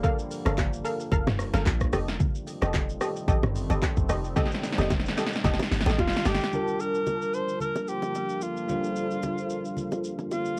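The recording has a homespun cassette character, with light reverb around it. In this soulful, deep amapiano fragment, a swung groove rolls under a moody, evolving ambient pad of detuned sawtooth and sine layers, while punchy, bright chord stabs with a plucked filter snap and a round, dark log drum bass hits with a fast attack and decays into the low end. An up-front, layered deep house kit drives things with a deep kick, punchy snare, claps, rim clicks, hi-hat, shaker and toms, rounding off the opening stretch with a drum fill, and close, dry congas and bongos played with hard hands add acoustic texture throughout. A warm, vibrato-tinged alto saxophone with a smooth top takes the solo melody from 6.0 seconds, and the stabs and bass drop out shortly after, at 6.4 seconds. A clean, bell-like tine electric piano joins at 6.5 seconds, its chorused tones shimmering over the Gm9 harmony.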